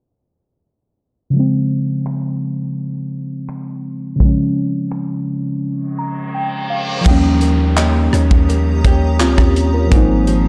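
Dark, low-pass-filtered studio ambience frames this romantic, dreamy contemporary R&B excerpt at 84 BPM, where muted, felt-like synth keys with chorus and a filter sweep open at 1.3 s on a Dbmaj7#11, soon joined by a crisp, punchy fusion kit of kick, rim click, hi-hat, snaps, handclaps and crash carrying vintage 12-bit sampler grit. After a break with a keys fill and a background reverse cymbal and downlifter, the second section arrives at 7.1 s on Eb7 with a deep, long sine 808 bass up front and fingerpicked nylon-string guitar arpeggios through digital delay, complete with finger squeak. A cloudy granular pad with built-in reverb enters at 8.0 s, while a woody, very quiet mallet-like synth pluck briefly sounds before the harmony settles on Ab6.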